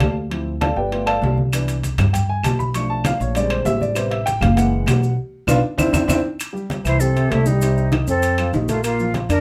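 A dark, mellow baby grand piano takes a solo over a sultry, driving Afro-Cuban jazz groove in A minor at 197 BPM, backed by a thumpy gut-string upright bass up front, woody claves and soft-handed congas in the background, and ringing metal-shell timbales, with grainy maracas entering at 1.5 seconds. A band accent and drum fill close the opening passage before a breathy trombone takes the melody at 6.9 seconds alongside a bright, crisp jazz flute in this short cut from a longer piece.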